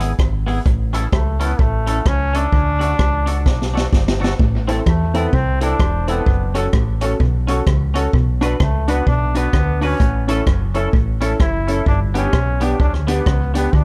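Joyful and bouncy, this ska clip moves at 128 BPM with a swung 4/4 feel. A swinging big-band drum kit with a high-tuned snare and punchy kick sits up front beside a round fingered electric bass, while a twangy, compressed electric guitar plays accompaniment through subtle chorus and tape echo. A brilliant trombone with light vibrato carries the melody from 1.1 seconds, and after a drum fill a mellow guitar riff enters in the background at 4.4 seconds and woody upright piano stabs join at 4.7 seconds, all in a small room with a dark, warm production.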